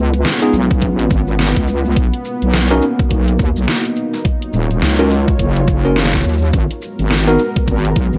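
A swung 105 BPM glitch hop groove in 4/4 and G# dorian sets a playful, swaggering mood, with an overdriven electronic kick knocking in at 0.7 s beneath a pop kit of hi-hat, shaker and deep, up-front snare, a heavy, saturated wobble bass with chorus, sidechain-pumped tine electric piano stabs through a combo amp with tremolo and analog delay, and a moody sawtooth analog pad with chorus and sidechain pumping that sustains C#7, Bmaj7, D#m9 and G#m9 chords, the mix sitting in light digital ambience with a dry, gritty hardware sound and vinyl crackle.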